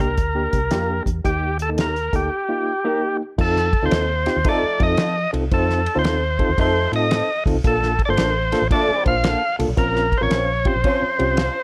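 A gritty, overdriven tonewheel organ carries the melody up front from the very start, its percussive key click and third-harmonic percussion riding over a reedy electric piano with a fast tremolo and a round, foam-muted electric bass in this joyful, uptempo 1960s-style soul excerpt. At 113 BPM in 4/4 with a swung eighth-note feel in F mixolydian, the groove is anchored by a cloth-damped, thuddy drum kit that enters at 0.2 seconds with a fat snare, tight kick, dark cymbals and a rolled-off top. At 0.7 seconds a slightly broken-up, lo-fi electric guitar through a small old amp adds compressed stabs, colored by tube saturation and a phaser. Chords move from Bb to Eb before settling on F7 as the second section begins at 3.4 seconds, later shifting to Bbmaj7 and Bbmadd9. A mellow horn section with vibrato and octave doubling adds a smooth second line from 4.5 seconds, and the whole is set in a light reverb and cut from a longer piece.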